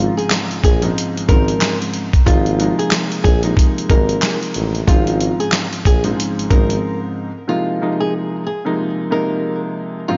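Boom-bap hip-hop in Ab major at 92 BPM with a swung 16th feel, this confident, nostalgic excerpt sets a fingerpicked flamenco guitar melody with tape echo over a dark, mellow baby grand piano whose cassette-tinged chords carry audible action noise, while a punchy tuba with light vibrato holds the bass and a gritty, compressed sampler-style kit of thumpy kick, snare, hi-hat and handclaps sits up front until both drop out at 6.8 seconds, leaving guitar and piano to carry on in a small, lightly reverberant room with softened highs.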